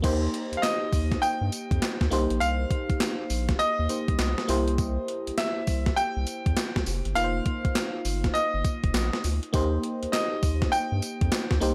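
New jack swing R&B at 101 BPM with swung sixteenths, this punchy, bouncy excerpt rides a thumpy, overdriven 12-bit drum machine of kick, snare, hi-hat, handclaps, tambourine and crash, soaked in gated reverb and sitting up front. A round, dark analog bass and a glassy, bell-like FM electric piano with chorus carry the accompaniment through Eb6, Cm7, C7 and F7sus4 before returning to Eb6. From 0.6 seconds a brilliant, polished concert grand piano plays a high melody with delay, all set in a digital ambience.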